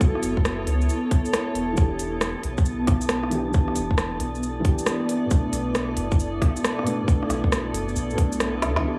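Future garage at 136 BPM with a 16th-note swing, nocturnal and wistful, moving through F#m7, Em7 and Bm7 in this short cut from a longer piece. A cloudy, evolving granular pad sits up front with sidechain pumping and its own reverb, while a tight, layered electronic kick drives alongside an organic electronic kit of woody snare, crisp hats, rim click and shaker re-recorded in a large room, and a round sine sub bass enters at 0.2 seconds. Deep in the background, a felt-muted upright piano, boxy and intimate, pumps through an analog delay while a breathy, wind-like tuned noise texture drifts higher above it, all on a dry, gritty hardware recording with transformer saturation, leading to a drum fill at 8.6 seconds and a band accent at 8.7 seconds.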